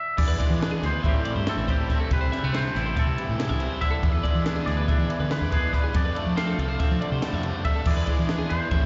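Restless and intricate, this math rock and midwest emo excerpt from a live gig moves in 9/8 at 281 BPM in eighths over chords such as E7, Am7, C6 and Dm7, where a twangy electric guitar carries the melody with slapback echo and analog delay, a second twangy guitar supplies accompaniment, a crunchy, double-tracked overdriven guitar drives the riff from 0.2 seconds, a growly fuzz bass sits up front, a compact cocktail drum kit with a high-tuned snare, punchy kick, crash and ride keeps time in a dark tone, and a clean, compressed twelve-string electric guitar with subtle chorus adds arpeggios from 0.3 seconds, all heard through the venue's PA with a recital-hall ambience and a dull top end.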